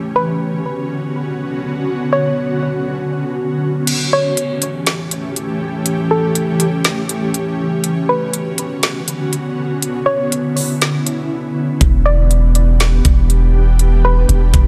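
Atmospheric cloud-rap at 121 BPM in a half-time 4/4 feel and B minor, this hazy, melancholic hip hop excerpt opens on an ethereal, detuned pad carrying sustained chords through ensemble chorus, tremolo and sidechain pumping, with a soft, round pluck melody sent through chorus and delay above it; a crisp trap kit with a woody snare enters at 3.9 seconds, holding back its knocking kick through a short break at 11.3 seconds until a deep, long 808-style sine bass lands up front with it at 11.8 seconds as the harmony moves from Bmadd9 and A7 to Em7, all in light digital ambience.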